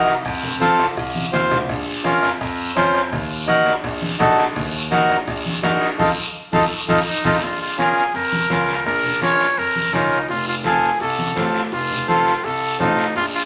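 A passionate, danceable cumbia excerpt at 167 BPM in Bb harmonic minor, where a reedy, close-miked accordion carries the accompaniment over a clear grand piano bass line, raspy guiro, bright low-tuned congas and a soft bombo in the background that drops out at 7.3 s, with an early drum fill, then another fill and a band accent leading into the second section, while a gritty, growling trumpet with light vibrato takes the melody up front from 7.1 s, the band sitting in a wet large-studio reverb.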